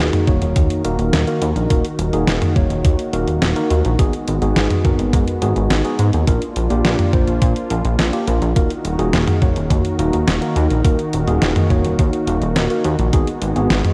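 Cinematic and moody, this synthwave excerpt pairs a thumpy, up-front electronic kick and a fat-snared 12-bit drum machine with a glossy, nasal chorused synth bass that pumps under sidechain, while a clean tine electric piano stabs with analog delay over a smooth, warbling analog pad of detuned sustained chords in the background, all wrapped in the character of a home cassette recording.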